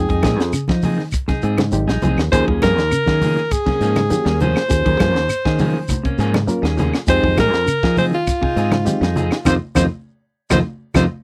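A dry, close 1970s-style studio sound frames this joyful, funky afrobeat clip, cut from a longer piece, where an edgy alto saxophone sits up front with scooped notes over a round, punchy fingered electric bass and a tight funk kit with a high-tuned snare. Behind them, a reedy, worn electric piano, slightly out of tune and colored by phaser, comps alongside one clean picked guitar playing stabs and another playing low arpeggios. Ringing congas, woody claves and a grainy shekere fill out the percussion as the harmony moves from Fm7 to Eb9sus4 and back, before the band hits an accent at 9.5 seconds.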